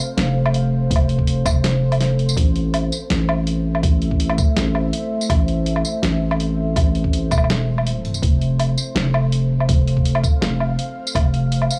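A growling, buzzy 808-style bass with transformer saturation sits up front in this cinematic, spacious half-time drum and bass excerpt at 164 BPM in A minor, driven by a thumpy, pitched-down electronic kick and a compressed, tape-warm sampler-style kit of hi-hat, medium-tuned snare, tambourine and woodblock, while a deep, moody, warbling ambient pad with chorus, reverb and sidechain pumping holds sustained chords from F to Am and back to F, the whole recording carrying a dry, gritty cassette character and small room ambience.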